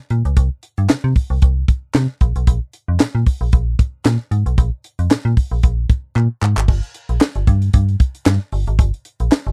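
Danceable and slick, this short cut from a longer early-eighties boogie funk piece moves at 114 BPM in 4/4, with a light swing on the sixteenths. A metallic FM bass carries the low end from G1 to C3, its digital tone pairing a fast attack and decaying notes with a mellow edge, sitting up front in the mix. A tight funk drum kit plays alongside it throughout, an acoustic and dry kit with a high-tuned snare, a tight kick, hi-hat, handclaps and crash cymbal, also placed up front. The sound is close and dry, in the manner of a 1970s studio with little reverb. A drum fill at 6.2 seconds leads into a new section at 6.7 seconds, which runs until the cut ends at 9.5 seconds.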